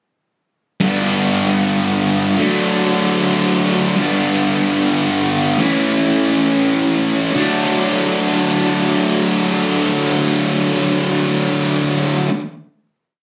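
A thick, bright fuzz electric guitar, double-tracked and up front with slapback echo, rings out picked chords through a carefree, jangly rock piece in free time and D major, moving G, D, G, A and slowing down from 4.0 to 7.3 seconds before settling on a final D chord that sustains to 11.0 seconds, all caught on a phone amid compressed club ambience.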